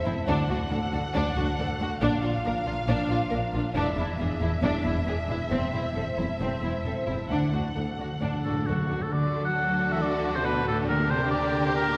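A heroic adventure film cue at 136 BPM in D mixolydian, triumphant and adventurous, where a dark, distant violin section carries the melody over bright ringing harp arpeggios, a second violin line, background violas and cellos, and distant double basses, all with soft-attack vibrato and touches of portamento, before very quiet hard-mallet timpani fill in from 7.3 seconds and an up-front, clear solo oboe joins at 8.4 seconds, all bathed in a wet church reverb.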